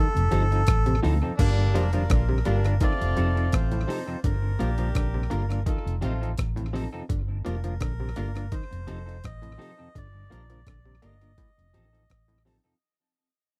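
A dry, close 1970s-style studio sound carries this meditative, hypnotic roots reggae excerpt at 84 BPM, where a reedy, breathy melodica with tape echo sings over a dark, round, up-front muted bass and gritty, pitched-up sampler-style drums with a thumpy kick, while a stringy muted clav plays arpeggios, a bright semi-hollow guitar adds lush chorus, a piping tonewheel organ with key click sits in the background, and a distant horn section plays a second line from 1.4 to 6.3 seconds as the music fades out over alternating F7 and Gm7 chords.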